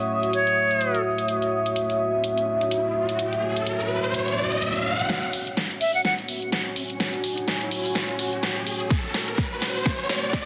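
Bass house at 126 BPM in F# dorian, with a swung 16th-note feel and a bouncy, aggressive mood, this excerpt sits on an F# minor chord throughout. A dark analog pad holds sustained chords with a nasal, detuned edge, chorus and vintage 12-bit sampler grit. Above it, a deep ambient pad adds a mellow, sub-octave texture with its own reverb, and both pads pump against the sidechain. A big-room dance kit of hi-hat and a huge snare sits up front in a small room, while a reedy silver concert flute with vibrato and delay drifts in briefly at 0.3 s and returns for a moment later on. A filter sweep opens the track, an electronic riser enters at 2.1 s, and the second half becomes a build-up with a drum fill before a punchy electronic kick drops in at 8.9 s, all under a plate reverb and a dense, heavily limited modern master.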